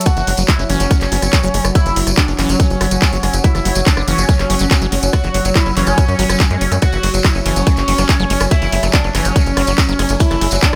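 Intense and hypnotic, this psychedelic trance excerpt drives along at 142 BPM in a straight 4/4, cut from a longer piece and tuned slightly sharp to A4 = 441 Hz. A tight, up-front electronic kick anchors the groove alongside a garage drum kit of handclaps, warm hi-hats, ride cymbal and rim clicks, both re-recorded in a small room, while a jingly, band-limited tambourine adds vintage sparkle. Underneath, a punchy sequencer bass with a fast filter pluck drives between F#1 and F#2, joined in the background by a squelchy, resonant liquid acid bass riff treated with phaser, delay and sidechain pumping. Over the top, a gritty, guitar-like overdriven lead screams out its melody between C#4 and F#4 with vibrato, phaser, delay and pumping. A very quiet, mellow wavetable pad sustains evolving chords around F#3, and a warbling, lo-fi tape-like pad sits higher, between C#5 and G#5, with chorus, phaser and pumping, while a dark, nasal vowel-sweep wobble bass murmurs faintly from 1.1 to 3.2 seconds and again from 7.9 seconds, all within a light reverb.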